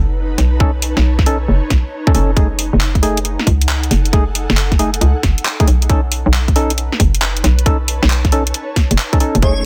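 A hollow, knocking FM bass anchors this bouncy, late-night two-step garage excerpt at 136 BPM with a 16th-note swing, its punchy notes sitting up front beside a tight, overdriven electronic kick that enters at 0.6 s, just after a garage kit of cracking snare, handclaps and hi-hat arrives at 0.4 s. Mellow organ stabs with chorus and digital delay and an ethereal pad with sidechain pumping float over chords moving between B9 and F#m69, in a dense, heavily limited mix with little room reverb. From 9.4 s, a dreamy, bright lead sounds a single C#5 as a silky vintage string machine slips in beneath it.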